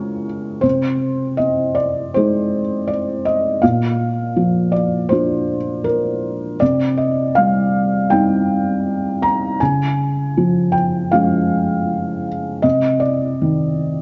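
A dark, softly reverberant sound with its top end rolled off frames this reflective, intimate fragment of neoclassical minimalist piano, where a solo felt-muted upright sits up front with thick, mellow tone and audible action noise, moving in free rubato through Db, Ab/C, Bb and Cm across its 14 seconds.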